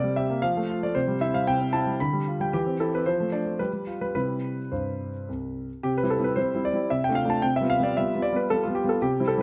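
This classical-period piano sonatina fragment, cut from a longer piece, has an elegant, playful mood in a triple metre shaped with rubato, and its opening phrase returns at 5.8 seconds. A concert grand plays alone throughout, its clear, intimate tone sitting up front with audible action noise, deep bass and short sustain. The harmony moves from F and C through G7 and Dm back home to C, and a moderate reverb from a large studio surrounds the piano.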